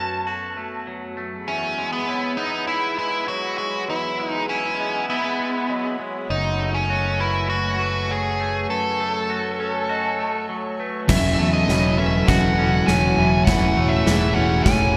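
A straight 4/4 pulse at 100 BPM carries this euphoric, soaring post-rock excerpt in E major, where a nasal, overdriven lead guitar with a parked wah sings the melody up front over bright, twangy clean guitar arpeggios and a dark, sul tasto string section floating in the background, as a ringing vibraphone adds arpeggios from 1.5 s, a fingered electric bass joins at 6.3 s, and at 11.1 s a sludgy distorted guitar riff and a big rock drum kit with punchy kick and bright cymbals launch a build-up and drum fill, all bathed in a wet church reverb.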